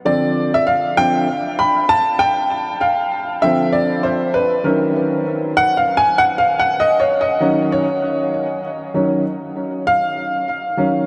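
A dreamy, reverb-soaked mix surrounds this short passage cut from a longer piece, with a huge ambient space whose tail lingers for seconds. It is a cool, mellow hip hop instrumental in 4/4 with a swung sixteenth-note feel, tuned slightly sharp of standard pitch. A single upright piano plays solo from 0.1 to 11.1 seconds, sitting up front with a woody, smooth and vintage character, long sustain and a tape echo trailing its notes. The harmony moves from Dm7 to Ebm7 at 4.7 seconds. The piano ranges from the low middle register up into its high treble.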